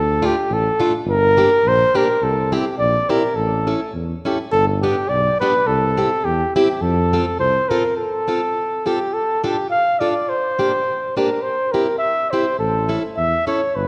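A straight, bouncy 2/4 lilt drives this jolly alpine dance-band excerpt, where a punchy, up-front flugelhorn carries the classical-style melody over a dark, fingerpicked plugged-in steel-string acoustic guitar, while a warm tuba holds down the bass before falling silent at 7.6 s and returning at 12.6 s, the whole ensemble ringing in a moderate concert-hall reverb.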